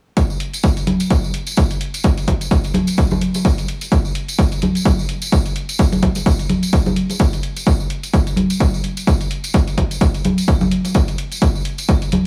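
A punchy, overdriven electronic kick drum sits up front in this piano house groove, cut from a longer piece, with an uplifting, feel-good mood at 128 BPM in 4/4 and a 57% swing on the sixteenths. The kick and an analog electronic hi-hat both run from 0.2 seconds to about the 12-second mark, each re-recorded in a large room that gives them a roomy edge. The hi-hat sits low in the balance under its own overdrive grit. Tambourine and congas ring out in a close, dry acoustic sound treated with analog delay, adding a lively percussive layer across the same span. The whole passage stays in one section, set in an echo-heavy mix with a digital ambience.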